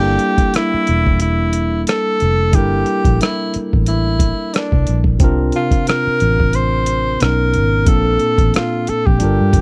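A lightly swung 90 BPM groove in 4/4 from a gritty, overdriven sampler-style drum kit with a thumpy kick, hi-hat and rim click, entering at 0.2 s, drives this smooth, soulful neo-soul and R&B excerpt in G dorian, where a dark, round, foam-muted fingered electric bass and a bright, barky tine electric piano played through a combo amp move through Gm69, C7sus4, Bmaj7 and Bbmaj7 beneath an up-front, breathy tenor saxophone melody with light vibrato, scooped notes and tape echo, captured in a dry, close 1970s-style studio sound.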